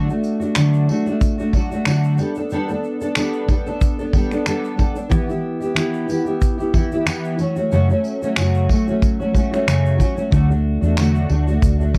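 Acoustic pop with a sunny, easy-going mood, moving at 92 BPM in D major with a light sixteenth-note swing, built on a double-tracked, full-bodied fingerpicked steel-string acoustic guitar up front, backed by a modern studio kit of finger snaps, punchy kick and shaker with a rolled-off top, and a jingly tambourine sitting in the background. The chords step through D, Gadd9, Em and F#m before returning to D at 10.3 seconds, where a dark, round, foam-muted vintage electric bass enters up front. The whole clip has the dry, close feel of a 1970s-style studio recording with light reverb, and it is cut from a longer piece.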